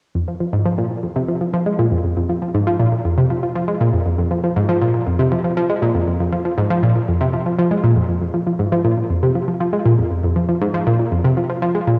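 Expansive and cosmic, this ambient fragment from a longer piece features a lone, bright, round analog pluck with a detuned, wave-folded edge, playing from 0.1 to 12.0 seconds in a low register through chorus, analog delay and a lush plate reverb, all colored by worn, warbling cassette tape with drifting pitch, and it shifts to a new section at 8.2 seconds.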